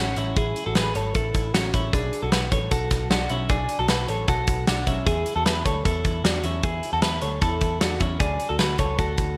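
A bright, 1980s-style digital production with a lush hall reverb frames this short, nostalgic slice of jangly indie pop in E mixolydian, moving at 153 BPM in a straight 4/4. Up front, a clean, twangy twelve-string electric guitar with subtle chorus picks arpeggios over Amaj7, Bm7, E7sus4 and Dmaj7, while a dark, round, foam-muted picked bass with tube saturation holds the low end. Entering at 0.2 seconds, a big rock drum kit adds a punchy kick, a medium-tuned snare and hi-hat, all bathed in gated reverb with a mellow, rolled-off top.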